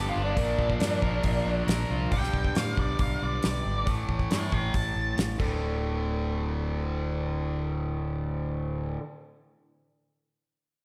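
An octave-fuzz lead guitar carries the melody from the start of this short cut from a longer classic rock piece, playing a dark, fuzzy, picked solo that runs until about 5.2 seconds. Beneath it, a bright, up-front distorted electric guitar drives a low riff with overdrive and slapback echo, alongside a crunchy overdriven guitar whose own picked riff drops out early. A round, punchy fingered electric bass holds down the low end throughout, and a damped 70s drum kit enters at 0.4 seconds with a fat snare, tight kick, dark cymbals and hi-hat, sounding dry yet airy and polished. At 5.4 seconds a clean, compressed lap steel guitar slips in softly in the background, played with fingerpicks and slide, with volume swells and slapback echo. The music moves at 137 BPM in a straight 4/4, with a driving, confident mood over a Bb, G/B, A5 and D5 progression. A lush hall reverb and a touch of small-room ambience give the whole band a big arena sound.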